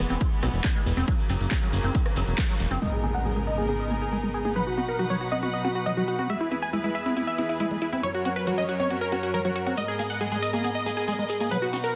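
A punchy, detuned supersaw stab carries the melody up front from 2.8 seconds in this bittersweet, emotional uplifting trance excerpt, its filtered plucks pumping against the sidechain while a filter sweep opens across it and trails of delay follow. Beneath it, a clear, earthy studio string section holds bowed ensemble chords with light vibrato, and a squelchy, resonant acid bass spins chorused arpeggios, both also shaped by sweeps and sidechain pumping. In the opening bars, an overdriven, punchy kick and a fat analog bass drive the groove; the kick falls away at 2.5 seconds, and the bass drops out just as a brief electronic impact lands at 2.8 seconds. A house kit of handclaps, metallic hats and rim clicks runs throughout, while a grainy vintage tube shaker plays at the start and returns at 9.8 seconds. The chords cycle through E, F#, G#madd9 and B, set in a moderate digital room reverb and a dense, heavily limited modern master.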